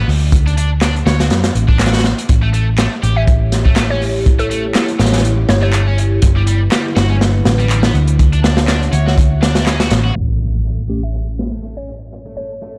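Playful and energetic, this swung breakbeat excerpt rides a crunchy, saturated drum kit and a round, punchy hollow-body bass up front, with background electronic handclaps, a double-tracked high-gain guitar riff, a moody detuned analog pad pumping from 3.0 s, and brief woody, warbling synth-pluck melodies, before a band accent, an electronic impact and a filter sweep on the guitar mark a shift at 10.2 s, where a mellow tine electric piano adds a short stab within a dark, low-passed production.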